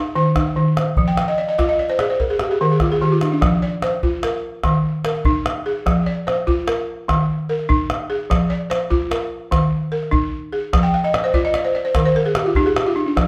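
A live, stone-walled room with moderate reverb frames this short, flowing West African traditional piece, cut from a longer performance, in F dorian at 98 BPM in a straight 12/8. Up front, a woody, buzzing balafon struck with rubber mallets spins airy arpeggios from Eb3 to G5, with fills from 1.1 to 3.4 seconds and again from 10.8 seconds, while a deep calabash joins at 0.2 seconds. The reflective harmony settles into alternating F minor and E-flat shapes through the second section.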